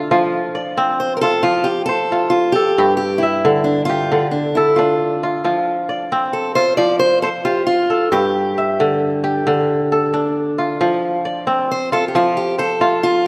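Drenched in a lush hall reverb, this rough home demo carries lossy compression artefacts. A flowing, warm West African traditional passage in 12/8 opens on ringing, crisp kora arpeggios played up front. A boxy, fingerpicked parlour-style steel-string guitar with fresh strings enters at 1.0 seconds to carry the melody over a cycling progression of F, G5 and Dm, in a brief section cut from a longer piece.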